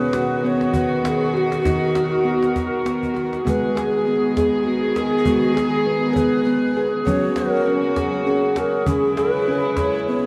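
World meditative music in a gentle, hypnotic 3/4 sway, heard as a passage cut from a longer piece. A bright, ringing steel handpan sits up front with arpeggios, while a breathy, hollow cedar flute carries the melody with a tongued chiff; both parts are coloured by tape echo. Reedy, gut-toned chamber strings hold sustained chords with light vibrato, and a snappy cajon played with soft hands adds a drum fill at 3.0 seconds before the music moves into a new section at 3.5 seconds, all bathed in a dreamy cathedral reverb.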